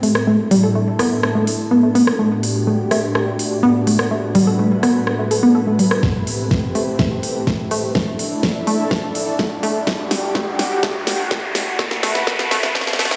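Expansive and bittersweet, this progressive house build-up at 125 BPM in A dorian sets a lush, warbling unison pad holding sustained chords and a round, detuned analog pluck playing arpeggios with delay, both pumping under sidechain and sweeping through filters, over a pop drum kit with a fat snare and crisp hats that breaks into a fill as a knocking, tape-warm electronic kick enters at 6.0 seconds and a riser climbs in the background from 8.1 seconds, all washed in a huge ambient reverb.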